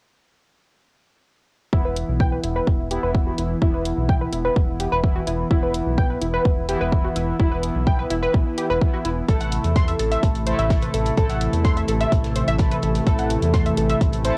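Melodic techno with a dark, cinematic mood: from 1.7 s, a tight, detuned sequenced synth plays driving arpeggios alongside bold, brassy analog synth stabs, both treated with chorus, sidechain pumping, cassette tape and analog delay. They sit over a round, deep analog bass, a punchy, overdriven electronic kick placed up front, and bright electronic hi-hats that join at 2.0 s. At 9.3 s a smooth, slow-attack analog pad adds sustained chords in the background, and a very quiet acoustic soul kit brings a dark, medium-tuned snare and hi-hat, all inside a small room with light reverb and a lo-fi home-cassette character.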